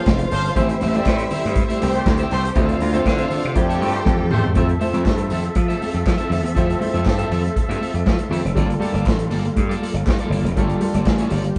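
Disco excerpt with a danceable, joyful feel, built on a gritty, overdriven slap bass and a punchy vintage drum kit up front, with a slightly broken-up electric guitar, a clear grand piano with audible action noise, lush dark strings, very quiet high-tuned congas and hollow handclaps, while a smooth violin section and tight, distant horn stabs play only until 4.5 seconds, when a drum fill leads into the second section.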